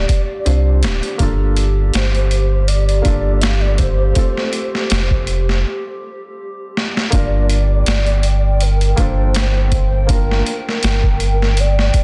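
The rhythm rides a lazy 81 BPM in 4/4, with a light swing on the sixteenths, as a gritty, pitched-down boom bap sampler-style kit lays down a thumpy kick, a high-tuned snare and hi-hat, sounding up front in a large room. This excerpt from a longer trip hop piece sits in G minor with a hypnotic, brooding mood, moving from Dm7 to Gm7 and Fadd9 before returning to Gm7 when the second section opens at 7.1 seconds. A deep, round dub sub bass anchors the low end and sits prominently in the mix, while a felt-muted upright piano adds intimate, tremolo-shaded accompaniment. Behind them, a warbling, nostalgic tape-like pad holds sustained, detuned chords with chorus and its own reverb, tucked into the background. A pure, breathy sine lead carries the melody with a soft attack, vibrato, ensemble chorus and dub echo. A break arrives at 5.6 seconds, capped by a short drum fill, and the dense, heavily limited master keeps the whole sound dry and close.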